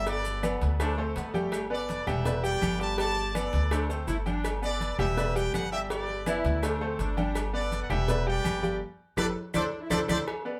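This short salsa clip, cut from a longer piece, sounds like a band playing live together in one room with a moderate studio reverb, sunny and joyful at a brisk 165 BPM in G major. A bright, tight trumpet section carries the melody up front with light vibrato, while a dark, smooth-topped saxophone section adds a second line beneath it from about 0.4 seconds. A brilliant, somewhat worn concert grand piano with deep bass provides the accompaniment, and a thumpy, woody upright bass with gut strings sits up front, played pizzicato. The percussion includes close, dry congas with a thin skin under soft hands, a tight high-tuned cowbell, ringing metal-shelled agogo bells and timbales, vintage-sounding claves, and grainy, mellow maracas, most of them set in the background. The harmony moves between Gadd9 and D5, and a drum fill with a band accent arrives at 8.8 seconds to close the passage.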